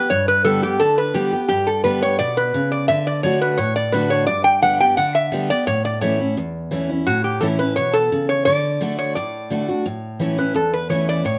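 Rustic and virtuosic, this straight-feel bluegrass cut features a lap resonator guitar carrying the melody with a metallic, nasal slide tone played with fingerpicks, set up front and bathed in plate reverb. Beneath it, a picked dreadnought steel-string acoustic guitar supplies bright, full-bodied accompaniment through G, D and A chords, with finger squeaks audible. At 9.9 s the resonator guitar, played with a steel bar, takes a solo, and the recording has the rough, moderately reverberant sound of a home demo.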